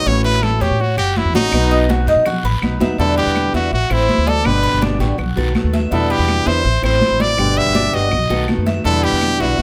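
Closely miked with light reverb, this warm, danceable Cuban son and guajira excerpt opens with a brilliant, punchy trumpet solo full of vibrato and scooped notes until 3.0 seconds, carried over a boxy fingerpicked archtop guitar with finger squeak, a metallic tres picking arpeggios with slapback echo, a thumpy up-front upright bass, distant high-tuned congas and woody claves in the background, and a raspy, very quiet guiro.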